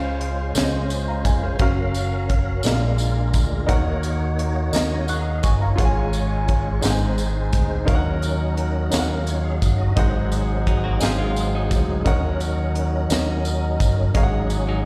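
Slow gospel in 6/8 at 57 BPM, reverent and uplifting, this brief excerpt moves through rich seventh chords beginning on Dbmaj7, heard like a live gig through the venue's PA in a recital hall's reverb. A woody, slightly detuned upright piano with audible action noise and slapback echo carries the accompaniment up front beside a round, amped fingered bass, while a tonewheel organ holds full, lightly overdriven sustained chords through a slow rotary speaker with chorus vibrato and key click. A tight funk kit with a high-tuned snare and tight kick and a jingly, close tambourine with slapback echo keep time, and a clean, picked, compressed electric guitar adds a second line from 10.7 s.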